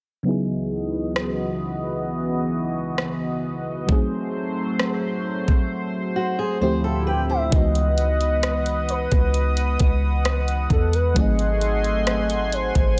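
A smooth, gliding portamento lead carries the melody from 7.1 seconds, its detuned sawtooth-and-sine tone softened by chorus, vibrato and delay. This moody, late-night contemporary R&B piece is cut from a longer work and moves at 66 BPM in a straight 4/4 in C# minor. A mellow FM electric piano, round and warbling with a vintage, dark colour shaped by chorus and phaser, plays alongside a shimmering, retro pulse-width pad. An electronic drum kit with a knocking kick, hi-hat and rim click plays up front. A filter sweep runs through the opening section, which breaks into a brief silent gap, and a fingerpicked steel-string acoustic guitar adds short, full-bodied arpeggios. In the second section a deep, boomy 808-style bass joins at 7.5 seconds, with chords moving through C#m11 and G#7b9 under light reverb.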